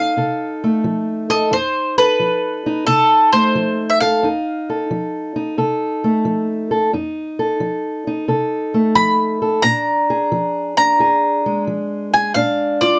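A bright bowl-back mandolin carries the melody up front, its picked double strings giving this laid-back, swaggering acoustic country blues fragment a confident edge over a swung feel. Beneath it, a dark, boxy parlour-style steel-string guitar fingerpicks the accompaniment, sitting slightly lower in level and moving from F7 to Bb7 at 9.6 seconds. Both parts play together throughout in a modest booth ambience with a short, close decay.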